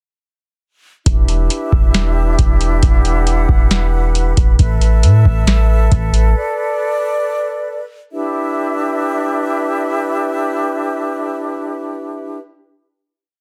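This short, dense hip hop piece has a heavily limited modern master and little reverb, so every part sits close and up front. It is atmospheric, melancholic cloud-rap with an ethereal air and a sparse half-time beat. A breathy flute section holds sustained pad chords with soft attacks, vibrato and lifted highs, and a sidechain pumping effect on the flutes gives them a rhythmic pumping motion. From 1.1 s a booming analog drum machine with vintage 12-bit sampler grit lays down a deep kick, tonal snare and metallic hats, while a clean, sine-like 808-style bass plays long, dark sub-bass notes that follow the kick and slide in pitch. The harmony moves from Em7 to Asus2 in the verse. The drums stop at 6.2 s and the bass shortly after, leaving the expressive flutes to settle on a final Em7 chord that rings until 12.4 s.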